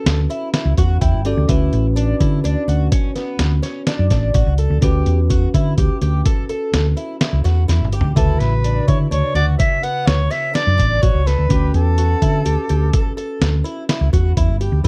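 Driving and bright, this progressive instrumental excerpt moves at 126 BPM in 7/4 in D major, with a bell-like tine electric piano adding a fill at 0.8 seconds, shimmering octave-doubled fingerpicked twelve-string acoustic guitar arpeggios, an up-front, round, dark hollow-body electric bass, and a muffled, pitched-down trip hop sampler-style drum kit with a thumpy kick that fills just before a distant, vibrato-rich soprano saxophone takes the melody at 8.2 seconds over alternating A7/D and Dmaj7 chords in a dry, close 1970s-style studio sound.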